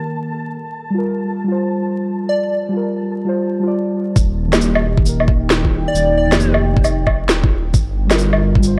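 The rhythm swings its sixteenths in a loose 4/4, and for the opening seconds it is carried by muted, felt-like synth keys: soft, intimate and full-bodied, pulsing with sidechain pumping, chorus and an analog delay. A grainy, flickering texture hangs high above them until about 3.3 seconds. A deep, moody pad settles into the background with sustained chords, slow-blooming and reverberant. A plucky unison lead drops in brief, catchy phrases, punchy yet mellow, with a filter sweep and a moving notch in its tone. At 4.2 seconds this ghostly, melancholic future garage fragment gains its beat. An overdriven, knocking electronic kick and a woody snare with shaker and woodblock sit up front, the latter re-recorded in a large room. A dark, rumbling detuned saw bass pumps beneath them, while vinyl crackle and a dry, gritty hardware sheen colour the whole cut.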